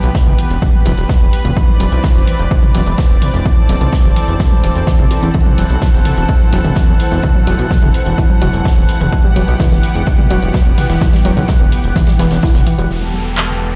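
Melodic techno with a melancholic, cinematic mood, cut from a longer piece and moving through a minor-leaning progression of chords held over a steady bass note. A lush, airy unison pad of detuned sawtooth and square waves with a noise layer sustains chords throughout, bright and chorused, breathing with sidechain pumping. Beneath it sits a fat, thick analog bass, detuned and evolving with a filter-plucked attack, placed up front and also pumping. A punchy electronic kick leads the drums, joined by a tape-toned analog drum machine playing handclaps, hi-hat and toms, both re-recorded in a small room, while a distant, roomy acoustic kit adds dark ride cymbal and a fat snare in the background. A warbling, lo-fi pluck with a mellow square and sawtooth tone carries arpeggios through chorus and digital delay, under a filter sweep until 12.9 seconds, when an electronic downlifter closes the passage. 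The whole mix sounds as if played on a big sound system in a bare room, bathed in large studio reverb with a rolled-off top.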